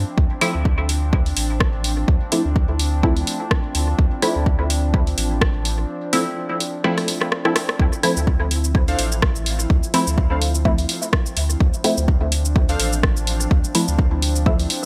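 Meditative and deep, this dub techno excerpt rests on a single Dm7 chord, where a warbly tape-like pad with chorus and built-in reverb sustains beneath muted, detuned dub chord stabs fed through phaser, cassette tape and dub echo, a round sine sub bass, an overdriven deep electronic kick, and a dry, punchy analog drum machine on hi-hat, rim click and shaker, with a drum fill at 6.8 seconds and lo-fi, nostalgic synth keys entering with a riff from 8.9 to 12.9 seconds, while the pad, stabs, bass and keys pump against the kick in a light digital ambience.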